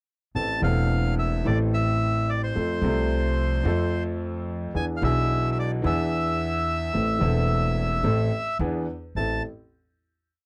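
A rubato sincopa rhythm in 4/4 drives this short, dramatic and tense tango, with a woody, thumpy pizzicato upright bass and a clear, vintage concert grand piano with deep bass sharing the pulse beneath a reedy, dark bandoneon that sings motif-based song phrases up front over an Am, F and E7 progression, all in a dry, close 1970s-style studio sound with light reverb, before the piece settles on a final Am chord at 9.2 seconds.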